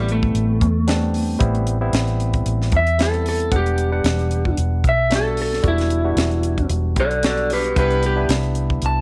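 Smoky and soulful, this straight-eighth soul blues in E minor moves at 113 BPM with a light sixteenth-note swing, as a slightly broken-up electric guitar through a small old amp plays a clean, picked solo with slapback echo over Am7, Em7 and Cmaj7. Underneath, a barky tine electric piano supplies direct accompaniment, a dark, round, foam-muted fingered bass punches up front, and a tight, dry funk drum kit with a high-tuned snare keeps hi-hat, kick and snare crisp from 0.1 seconds. A brilliant horn section with vibrato adds brief sustained chords in the background at 7.8 seconds, all set in a small room ambience in this short excerpt from a longer piece.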